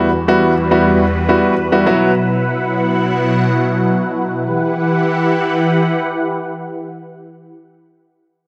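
Set at 104 BPM in a straight 4/4, this short pop excerpt in E minor carries a confident, energetic mood. A clear grand piano plays accompaniment in the opening 2.1 seconds, its intimate, polished tone sitting up front with audible action noise from the instrument. Alongside it, a filtered supersaw swell holds sustained chords until 7.5 seconds, its detuned sawtooth unison evolving through a moving notch with a soft attack and a mellow character. The harmony moves from Emadd9 to Bsus4 and returns to Emadd9 at 4.5 seconds, where a new section begins. Light reverb and a digital ambience frame a dark, warm production that feels like a moment lifted from a longer piece.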